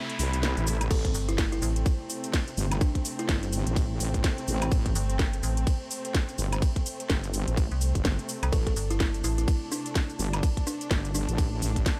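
A heavy, detuned wobble bass drives this aggressive, gritty bass house excerpt at 126 BPM in A minor, its saturated sawtooth tone thickened with chorus and pumping against the sidechain from 0.2 seconds onward. A tight, up-front electronic kick anchors the 4/4 groove with a 59% swing on the sixteenths, joined by a tape-warm garage drum kit of cracking snare, metallic hi-hats, ride, crash, shaker and woodblock, both set in a studio ambience. A metallic FM bass with a fast attack and decaying tone adds a second low voice, first in a short burst and then from 5.0 to 9.5 seconds. Above, a buzzing, woody kalimba plucks a short, vintage-sounding melody through delay, while a dark, veiled con sordino string section holds sustained chords on A minor that pump beneath the mix. A brief electronic noise sweep opens the excerpt in a short break before the kick arrives at 0.9 seconds, and the whole sits in a digital ambience.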